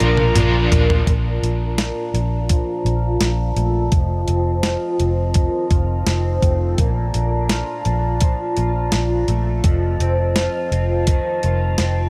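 Dream pop in a dreamy, blissful mood, this excerpt opens on a drum fill from a crisp 8-bit drum machine with a thumpy kick. A dark, overdriven semi-hollow guitar with tremolo and chorus plays accompaniment only until 1.1 s, after which a filter sweep runs to the end. Over that sweep, a shimmering, octave-doubled twelve-string acoustic guitar picks chorused, tape-echoed arpeggios, and a warm brass section holds sustained chords mellowed by a low-pass filter. Beneath them, an up-front, round, foam-muted electric bass anchors the Bbmaj7 and F7 changes, all set in light reverb.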